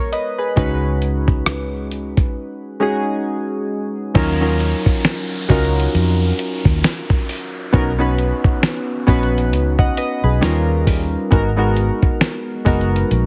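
Round, chorused analog keys with a pulse-and-sawtooth tone open this moody, late-night contemporary R&B fragment, sitting up front with a filter sweep and fast, decaying notes. They are joined almost at once by a gritty sampler-style drum kit with a thumpy kick, fat snare, rim click, hi-hat and crash in a swung feel. A dark, foam-muted fingered electric bass with an amped sound enters at 0.6 seconds, and after a break from 2.4 to 4.2 seconds a faint electronic downlifter appears beneath chords moving from Ebm7 through Bmaj7 and Eb7 back to Abm7, all within a dry, heavily compressed radio-style sound.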